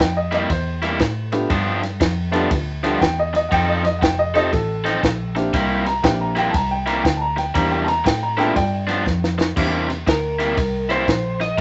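A laid-back, rollicking electric blues shuffle in C mixolydian opens on a woody upright piano taking the lead over a crunchy, bright overdriven guitar riff, a round, foam-muted electric bass and a compact cocktail drum kit with dark cymbals, a high-tuned snare and a punchy kick. The groove swings at 119 BPM in 4/4, moving through C7, G7 and F7 changes, with the drums and riff guitar sitting up front. A polished grand piano with long sustain joins at 1.3 seconds to fill in the accompaniment beneath the upright's short-sustained lines. The upright piano stops at 9.0 seconds, a drum fill follows, and an electric slide guitar, compressed and slightly broken-up, takes the melody from 10.1 seconds. A moderate studio reverb gives the whole a dark-edged room sound, and the piece is cut from a longer performance.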